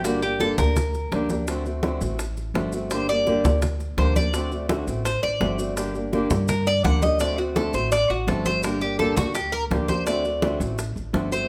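A straight 4/4 pulse drives this sultry Cuban son and guajira passage, cut from a longer piece, with the harmony swinging back and forth between Gm and D7 throughout. The Cuban tres takes the solo from 0.0 to 11.5 seconds, sitting up front with bright, metallic arpeggios picked on double strings, some of them octave-doubled. Beside it, a fingerpicked swing-style acoustic guitar, also up front, fills in the accompaniment with a boxy tone and fresh strings. Underneath, an upright bass played pizzicato on gut strings gives a woody, dark and thumpy foundation. In the background, close and dry congas ring at a medium tuning while round, low-tuned bongos are struck with hard hands, and grainy, mellow maracas add texture from a live room. A moderate large-studio reverb wraps the ensemble in a warm sense of space.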